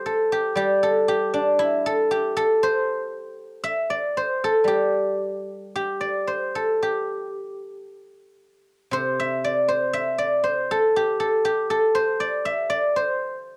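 A solo guzheng, played with fingerpicks, sits up front with a silvery, ringing tone across a range from C3 to E5 in this short fragment of a longer traditional Chinese piece. The mood is pastoral and flowing, with a rubato feel around 58 BPM in 2/4 and in the C gong mode, lasting 13.6 seconds. It was taped at home on cassette and given studio reverb.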